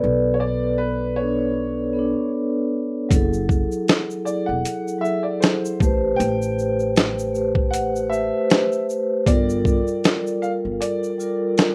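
Hazy and nostalgic, this lo-fi hip hop excerpt at 78 BPM with a light swing opens on mellow, ringing vibraphone colored by cassette tape and a low-pass filter over woody pizzicato upright bass, a smooth, vintage upright piano melody with analog delay and long sustain joins at once, and a gritty, pitched-down boom bap sampler kit with a thumpy kick, snare, hi-hat and shaker arrives up front at 3.1 s, the rough home-demo mix sitting in moderate reverb over drifting minor ninth chords.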